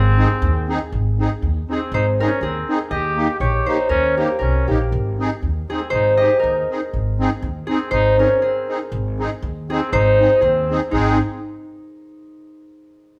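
Recorded live in one room with moderate large-studio reverb, this jolly, festive alpine dance-band excerpt in swung 2/4 puts a ringing, fingerpicked concert harp up front on the melody over a woody, thumpy pizzicato upright bass. A breathy, whispered trumpet with vibrato adds a soft, intimate second line, and a reedy, shimmering musette accordion enters at 0.2 s with close, dry accompaniment, before a brief break at 8.4 s leads into a short new section at 8.9 s.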